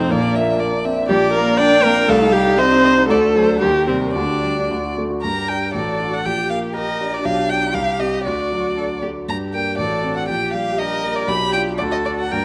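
A quick, stormy classical-period movement for piano quartet in 2/4 with a rubato, urgent feel, cut from a longer piece. The warm violin carries the melody up front, the cello adds a second line, and the viola fills out the accompaniment close to the listener; all three strings are played by single bowed players with vibrato, soft attacks, portamento and expressive phrasing. A polished, present grand piano also sits up front in the accompaniment, the whole ensemble plays throughout in a moderate scoring-stage reverb with detailed close miking, and a new section begins at 5.2 seconds.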